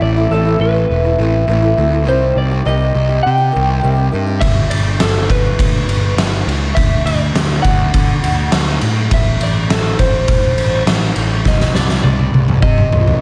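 Angsty and cathartic, this short cut from a longer quiet-loud alternative rock piece moves at a straight, steady 4/4 pulse over a chord cycle of Am, Cm, G and D. A dark, slightly broken-up electric guitar through a small old amp carries the lo-fi, compressed melody with a slapback echo, while a boxy, fingerpicked ladder-braced acoustic guitar plays arpeggios, also touched with slapback, until 4.4 seconds. Underneath, an overdriven fuzz bass sits up front, picked and direct. At 4.4 seconds an oversized, low-tuned drum kit arrives with a boomy kick, fat snare, ride cymbal and toms, sounding gritty and saturated in a bright stone room. A drum fill from 11.4 seconds closes the passage, all under a light reverb.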